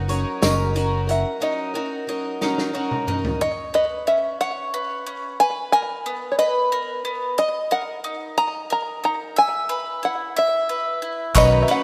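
Indie folk in 6/8, warm and nostalgic, this excerpt opens with a twangy, plunky fingerpicked banjo carrying the melody over bright, double-strung mandolin arpeggios, both touched with slapback echo, while a boxy, shimmering twelve-string guitar, round amped bass, a loose acoustic drum kit with a tight kick, and a jingly tambourine in the background fill out the start. The bass drops away at 1.2 seconds, and a drum fill ends the opening section at 3.4 seconds, after which banjo and mandolin carry on as a duo. Around 11.4 seconds, guitar, bass, drums and tambourine return with a mellow, bell-like glockenspiel and faint, hollow handclaps, all set in a lush hall reverb with a rough, homespun demo mix.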